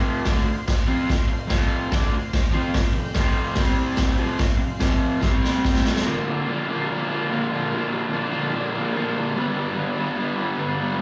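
Rowdy and raw, this garage rock excerpt at 145 BPM in a straight 4/4 sounds like a live gig heard through a club PA, with light small-room reverb. An overdriven, double-tracked electric guitar sits up front playing a picked riff with slapback echo over F5 and C5. A gritty, saturated acoustic kit with a punchy kick and rolled-off top plays until a fill ends at 6.1 s, while a vintage, buzzy combo organ holds sustained chords with lush chorus in the background until 5.9 s. From 6.1 s the guitar plays alone over Bb and G until 11.0 s.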